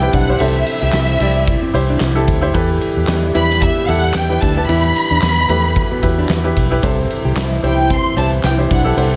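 Opening at once on a lush, dark violin section carrying the melody up front with vibrato and portamento over distant French horns, a felt-muted upright piano, and a round, foam-muted electric bass, this anthemic, hopeful piano-driven pop excerpt at 112 BPM with a light sixteenth-note swing adds a fingerpicked jumbo steel-string guitar riff in the background and a huge arena drum kit with a fat snare, punchy kick, hi-hat, ride and handclaps at 0.1 seconds, all moving from C through Em and back to C in light reverb.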